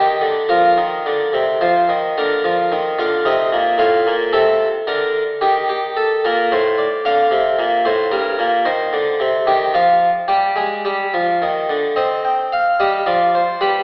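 A solo harpsichord opens at once in this baroque-style two-part invention, its airy, plucked tone sitting up front with the octave strings adding a brilliant, French-style edge. The music moves at a driving 110 BPM in 3/4 with a serious mood, starting in Bb major and turning to C minor at 8.6 seconds, heard from further back in a reverberant concert hall with a thin, telephone-like sound. This passage is cut from a longer piece and breaks off at 13.8 seconds.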